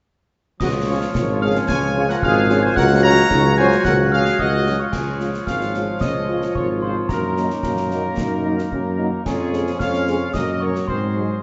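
Heard through a wet recital hall reverb with a softened top end, this spirited, festive military-style march for wind band in 2/4 is cut from a longer piece. Clear trumpets carry the melody with light vibrato, set back in the room, while a warm tuba sits up front on the bass with a soft attack. Woodwinds, a pure, expressive flute section that drops out at 4.9 seconds, a euphonium entering at 1.2 seconds, and a mellow, bell-like glockenspiel played with rubber mallets weave second lines over bright trombone chords, very quiet dark French horns, and concert snare, bass drum and dark clash cymbals.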